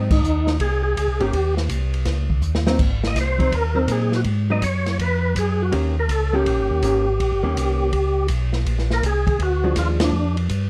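A fat, lightly overdriven tonewheel organ carries the melody up front, its percussive key-click attack colored by chorus vibrato, a slow rotary speaker and plate reverb, in this bluesy, soulful swinging soul jazz organ trio excerpt. A second, round and clean tonewheel organ plays the bass line through its own slow rotary speaker, while a clean, compressed hollow-body archtop guitar adds picked accompaniment. An acoustic small-room drum kit with dark cymbals and a boomy kick joins the band accents at 0.1 and 10.0 seconds, with a brief drum fill at 2.4 seconds, all set in a warm production.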